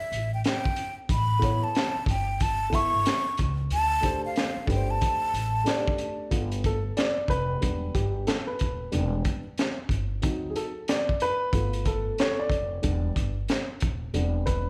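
A breathy, hollow concert flute opens this smoky, nocturnal jazz-hop excerpt, carrying a close-miked, straight-toned melody up front until 6.0 seconds. Underneath, a crunchy breakbeat kit sets a relaxed 92 BPM groove in 4/4 with a swung sixteenth feel. Its saturated, gritty sound pairs a tight kick with a high-tuned snare and hi-hat under a rolled-off top. A growly pizzicato upright bass with steel strings anchors the low end in A minor. A dark, vintage upright piano joins at 1.4 seconds, its woody tone carrying audible action noise and short sustain. At 6.3 seconds the piano takes an intimate solo through G9, Em7 and D7b9 chords, settling on Cmaj9/E, while a moderate recital hall reverb gives the whole piece the air of a church or concert hall.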